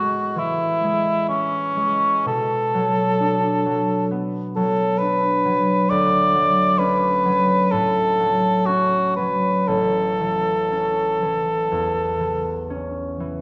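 A loose rubato pulse of 58-67 BPM in 4/4 carries this pastoral, dreamy impressionist classical duo in A major, where a cor anglais with light vibrato sings the melody up front until 12.7 seconds over a mellow, fingerpicked concert harp whose ringing accompaniment moves through Amaj7, Bm7, Dmaj7 and A6 and carries on by itself until 13.4 seconds, the pair set in the lush reverb of a church or concert hall in this fragment of a longer piece.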